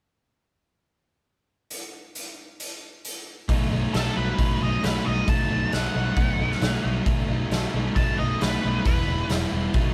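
Blues rock and southern rock in a heavy, brooding power-trio vein, this fragment of a longer piece opens with a raw garage drum kit alone at 1.7 s, its punchy kick, medium-tuned snare and hi-hat gritty and up front in a bright, pumping stone room, before a crunchy, double-tracked overdriven guitar riff and a dark, round, foam-muted fingered bass arrive together at 3.5 s over a B7 that later turns to Em, with a dark octave-fuzz lead guitar joining at 3.9 s with wah and distortion as the band plays live together under light reverb.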